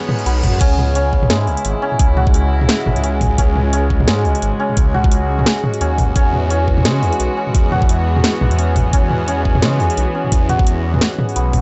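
A thick, swirling detuned saw bass with a phaser sits up front in this spacious, tense half-time drum and bass excerpt at 173 BPM in C# minor, entering at 0.3 s beneath a knocking electronic kick and a tape-warm kit of cracking snare, metallic hats, crash and toms that arrives at 0.1 s alongside a brief reverse cymbal. Above them, a reedy chamber string section holds sustained chords with sidechain pumping, while a bright hammered santur rings out arpeggios through tape echo. A very quiet, eerie FM drone warbles underneath, and the whole mix is dry and gritty, with a dark, hardware-recorded edge.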